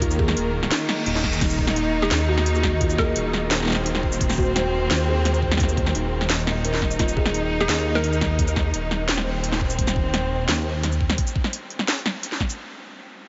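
Half-time drum and bass with a spacious, cinematic mood, this short cut from a longer piece sits at the drop from the first moment, its dreamy mix soaked in a huge ambient reverb with the highs rolled off. Up front, a deep, rumbling detuned saw bass with tube saturation and a layered electronic kit with a cracking snare and crisp hats anchor the groove alongside a knocking electronic kick, the kit also carrying shaker and crash cymbal. A rich chamber string section holds bowed, vibrato-laden sustained chords that pump against the sidechain, while a woody kalimba rings out arpeggios through analog delay in the background until 8.2 seconds. A very quiet reverse cymbal sounds briefly at 0.8 seconds, and a hollow, bouncy, mellow square-wave pluck with chorus and tape echo offers short melodic phrases in the background around 2.0 and 7.6 seconds. The strings and bass drop away at 11.2 seconds, leaving the drums to close out the final moment.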